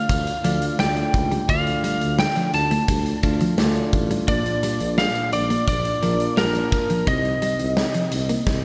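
Uplifting and glossy, this short 1980s-style pop excerpt moves through Dm, Bb and Cm as a lightly driven, slightly broken-up lead guitar carries the melody up front with delay. It sits over a bell-like tine electric piano, a dark, picked clean guitar riff with subtle chorus in the background, and a mellow tuba with vibrato and a smooth top playing the bass line. A punchy, up-front rock kit with gated reverb and a bright stone-room sound drives hi-hat, kick and snare, ending with a drum fill at 8.5 seconds, all set in a small room with light reverb.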